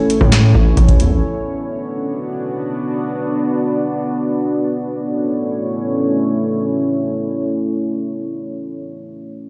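In free time, this trap-leaning hip hop fragment in A major opens over a deep, dark ambient pad with a brief punch: a booming analog drum machine sounds from 0.1 to 1.1 seconds, with a deep kick, crisp snare, handclaps and metallic hats carrying a short room and a gritty, tape-toned vintage sampler edge. Just behind it, a distorted 808-style bass hits from 0.2 to 1.2 seconds, heavy, saturated and aggressive, with a fast attack, a decaying tail and a noisy layer over its sine core, sitting up front alongside the drums. The pad, present from the very start, then carries the piece alone until 8.2 seconds, its detuned sawtooth unison and sub octave giving a full-bodied, moody bed of slow-attack sustained chords moving from A to B minor and back to A. A filter sweep shapes the pad through its first stretch, and its chorus and built-in reverb soften the sound further. The whole fragment sits in a lush hall ambience, as if heard through a big sound system in a bare room, leaving a dreamy yet triumphant impression.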